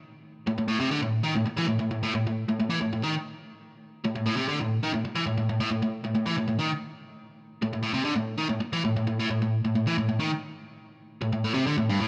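Driving and swaggering, this short rock excerpt moves at 134 BPM in a straight 4/4 feel, tuned slightly sharp to A4 = 443 Hz. A single electric guitar carries the whole passage as a solo part, entering at 0.5 seconds and playing through to the cut at 12.1 seconds. Its overdriven tone is biting yet warm, picked and double-tracked for a thick, doubled presence, and it sits up front in the mix. The line stays low, moving between G2 and E3, which gives the playing a heavy, chesty weight. A moderate plate reverb with a 2.9-second tail surrounds the sound, lending it a lingering sheen as the fragment is lifted from a longer piece.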